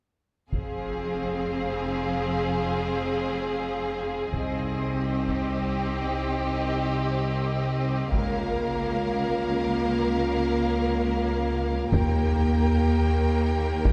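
In free time, this cinematic, epic orchestral film score excerpt in F minor builds from 0.5 to 13.9 seconds, its mood dark and heroic, with the harmony moving from Fm through Cm and Bbm/Db to Eb. Two violin sections carry the upper voices, one singing an expressive melody between Eb5 and G5 with a soft attack and lush vibrato, the other holding a focused second line from G4 to Bb4. Beneath them a rich viola section gives smooth, even accompaniment, while a tight French horn section sustains chords with light vibrato in classical style. The cellos anchor the bass in the background, joined by a distant, lush double bass section reaching down to F1. A close taiko ensemble struck with heavy sticks sits in the background, and a wet church reverb lends the whole a vast, resonant hall.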